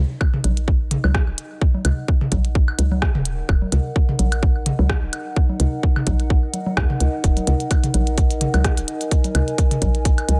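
This excerpt opens on a hollow, knocking FM bass, punchy and bouncy with a fast attack that decays into a mellow tail, sitting up front and pumping against the kick in Eb minor. A warbling, lo-fi pad arrives almost at once, a dark and nostalgic wash with chorus and its own reverb, slow to bloom and long to fade, breathing with the same sidechain pump above the bass. At 0.2 seconds a tight, layered electronic kick lands up front with a tape-softened edge, driving a hypnotic minimal techno groove at 128 BPM in 4/4 with a light swing on the sixteenths. Alongside it, overdriven analog-style woodblock, toms and congas add a quirky, gritty layer through digital delay, re-recorded in a small room. A sparse click kit of clicky hi-hats and rim clicks, also captured in a small room, joins shortly after, and the whole excerpt rests on a single Eb minor chord with a dry, close overall sound.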